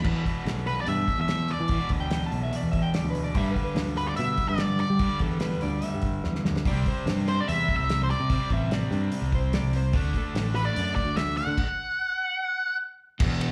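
A straight 4/4 classic rock groove at 146 BPM in E minor, brooding and gritty, pairs a cloth-damped, thuddy drum kit with a fat snare and an up-front, round, punchy overdriven picked bass beneath riffing distorted and overdriven electric guitars (the latter scooped and carrying slapback echo), while a double-tracked crunchy overdriven guitar and a silky, very quiet soft string machine surface only at the edges, an octave-fuzz lead guitar carries the melody from 0.7 s, and a slightly broken-up electric slide guitar adds a second line from 2.0 s, through a drum fill and a stop at 11.6 s, the band heard live through a club PA with light reverb in this cut from a longer piece.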